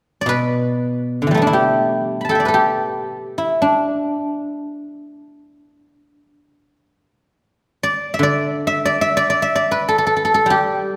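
In free time, a serene, flowing passage of Chinese traditional solo plucked strings features a guzheng played with fingerpicks, its silvery, ringing acoustic tone sitting up front across a range from B2 to B5, heard in this short cut from a longer piece with the moderate reverb of a church or concert hall around it.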